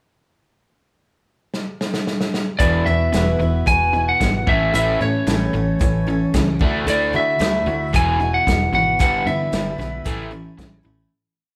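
Captured as a band playing live in one room with moderate large-studio reverb, this brief, jangly and nostalgic folk and heartland rock piece opens with a fill on a natural country drum kit of punchy kick, medium-tuned snare and hi-hat. At 2.6 s a twangy, slightly broken-up, compressed lead guitar sets a motif-based melody up front over bright folk strumming of open chord shapes on a picked steel-string acoustic guitar with finger squeak, crunchy, double-tracked, palm-muted eighth notes on an overdriven electric guitar, and a foam-muted fingered electric bass driving eighth notes, before the piece fades out from 9.0 s.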